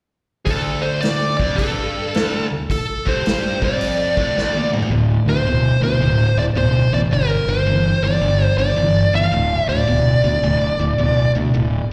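Gritty and brooding, this swung blues rock and southern rock power-trio excerpt in D minor at 108 BPM sets a dark, up-front overdriven lead guitar melody, bathed in plate reverb, slapback echo and digital delay, over a bright, double-tracked overdriven guitar riff, while a distant, roomy vintage drum kit plays until a fill closes its part at 4.9 seconds, where a growly fuzz fingered bass enters as the chords move from Dm to D5, G5 and back to D5, captured live through a venue's PA with recital hall reverb.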